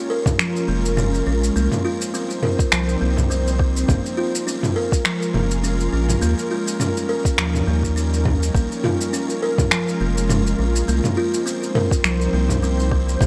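An airy, chorused pad holding sustained chords with built-in reverb and sidechain pumping opens this hypnotic organic downtempo piece at 103 BPM in Bb dorian, alongside a woody, buzzing kalimba playing arpeggios through tape echo, before an overdriven deep house kit of finger snaps, shaker and toms joins a soft electronic kick at 0.3 seconds and a round, deep analog bass enters at 0.7 seconds, the groove swung on sixteenths and set in light digital ambience.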